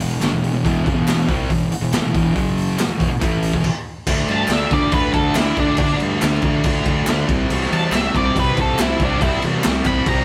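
A gritty, swaggering garage rock excerpt opens with a thick, double-tracked fuzz guitar riff up front, boomy saturated drums, an overdriven fuzz bass punching from the background and crisp dry handclaps. A stop at 3.6 seconds follows, and at 4.3 seconds a dark octave-fuzz lead guitar melody joins the band, all in a light, live-room reverb.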